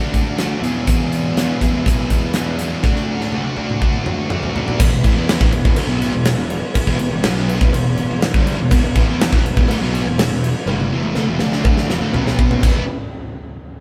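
Out front sits a huge arena drum kit, its boomy kick, fat snare and bright cymbals filling a pumping room sound, with drum fills rolling in from 2.8 to 4.8 seconds and again near the close. This is swaggering, confident classic rock in E mixolydian at 122 BPM, a straight 4/4 groove cut from a longer piece, with the band playing live together in a stone room of moderate reverb. Behind the drums, two picked guitar riffs grind along, one bright and distorted, the other sludgy and overdriven, while a punchy fuzz bass growls underneath. A very quiet tonewheel organ holds sustained chords through a slow rotary speaker, its key click and chorus vibrato just audible. A faint metallic cowbell joins at 4.8 seconds as the riff moves between D and E, building to a D5, E5, B5 push before landing back on E.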